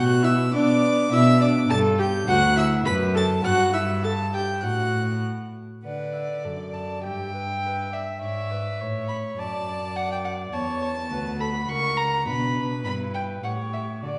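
In a straight 2/4, this quick, graceful and cheerful classical-period movement for string quartet is cut from a longer piece, with each player bowing gut strings in period style. The first violin carries the melody with an airy, nasal sound heard close, the second violin adds a light-vibrato line up front, the viola supplies reedy accompaniment, and the rich cello holds the bass, also up front. A new section begins at 5.9 seconds, and a wet recital-hall reverb sets the quartet further back in the room with a dulled top end.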